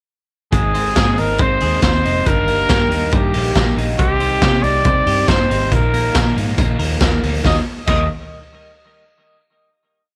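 Jangly indie pop at 139 BPM in Eb major, breezy and youthful, where a punchy, vibrato-laden trumpet carries a motif-based melody up front over a saturated garage drum kit with a boomy kick and off-beat open hats, a foam-muted, round bass line with slides, a bright twelve-string electric guitar rolling fingerpicked arpeggios and a crunchy overdriven guitar strumming eighth-note barre chords in the background, moving through Ab, Eb/G, Cm and Bbsus4 in a dry, close-sounding pre-chorus that resolves on a final Eb chord at 7.4 seconds.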